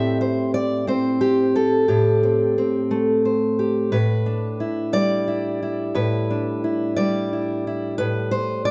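Melancholic and wistful, this short folk excerpt, cut from a longer piece, features a single fingerpicked steel-string acoustic guitar playing alone in a slow 6/8. The guitar sits up front with a warm, close and detailed presence, its notes ranging from A2 up to E5. A moderate concert hall reverb surrounds it, lending an auditorium sense of space that lingers around each note. The harmony rests on Am7, moves to Em7/A at 3.9 seconds, and returns to Am7 at 8.0 seconds, giving the brief passage a gently reflective cast. The excerpt lasts just under nine seconds, ending at 8.7 seconds.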